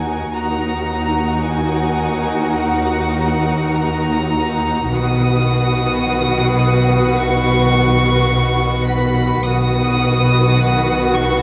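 A close, softly bowed chamber violin section carries the high melody over a darker, expressive symphonic violin line, smooth studio violas, a lush cello section and a rich, close double bass section in this mysterious, ominous cinematic excerpt at a slow 53 BPM, with a very quiet fingerpicked concert harp ringing in from 0.4 s as the harmony moves from D#m to B at 4.9 s, all set in a moderate scoring-stage reverb.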